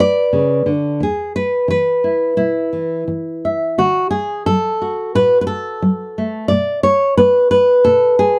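Loosely rubato around 88 BPM in 4/4, this gentle, nostalgic folk fragment features a single fingerpicked nylon-string guitar, sitting up front with fresh strings and a deep classical tone across a range from E2 to E5. Its harmony moves from D through E5 and back to D, settling on Bm at 6.5 seconds. The recording is dry and close, in the manner of a 1970s studio.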